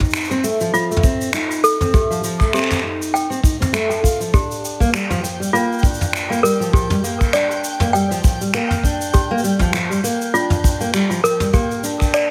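A lightly swung 16th-note groove at 100 BPM drives this wistful, autumnal folktronica piece in G minor, with a tight, up-front kick and a soft brush kit adding finger snaps, shaker and toms under a bright, fingerpicked steel-string acoustic guitar that plays delayed arpeggios over F7 moving to Gm7. A clanky, bell-like toy piano, slightly out of tune, carries a second line from 0.7 seconds with its own delay. From 5.0 seconds a faint, twinkling granular shimmer drifts in the background, all set in a light studio reverb on this short excerpt from a longer piece.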